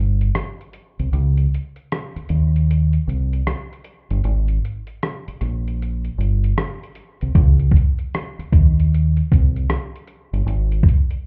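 A sampler-style drum kit sits up front, compressed and pitched down, with a thumpy kick, hi-hat and rim click carrying a swung sixteenth-note lo-fi hip hop feel. It comes in at 0.2 seconds, just after a deep fingered electric bass that opens the excerpt and stays in a low register, sounding dark, round and directly amped. Both parts are close and present in the mix. The whole recording has a muffled quality, as if heard through a wall, with only a faint hint of club reverb. The mood is reflective and nostalgic, and the piece runs as a break through the first 7.4 seconds of this short excerpt cut from a longer work.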